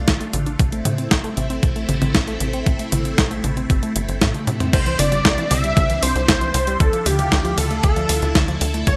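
Up front from 4.7 seconds, a thick, bold unison lead with vibrato carries the melody over this melodramatic, nostalgic italo disco cut in D minor at 116 BPM, rising above a punchy, nasal sequencer bass with tube saturation, swirling chords from a phased string machine, a lo-fi warbling pluck playing arpeggios in the background, and an overdriven 12-bit drum machine with a thumpy kick, all in a bright 1980s-style digital production with light reverb and a drum fill leading into the lead's entrance.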